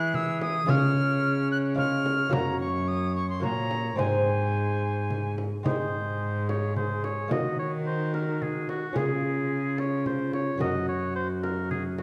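A classical, renaissance-style consort dance in triple time, festive and courtly, cut from a longer piece. An oboe carries the melody with light vibrato and a smooth top, while an alto recorder plays a second line with an airy, wooden tone, tongued attacks and a chiff. Beneath them, a fingerpicked lute with gut double strings, some doubled at the octave, gives delicate accompaniment, and a single bowed cello with a rich, reedy gut-string sound sits up front on the bass. A small, bright frame drum played with hard hands joins at 0.1 seconds and stays in the background. The harmony moves from E through Db and Gb to Ab before a second section at 5.7 seconds turns to Ebm, and a wet recital-hall reverb surrounds the dark, warm production.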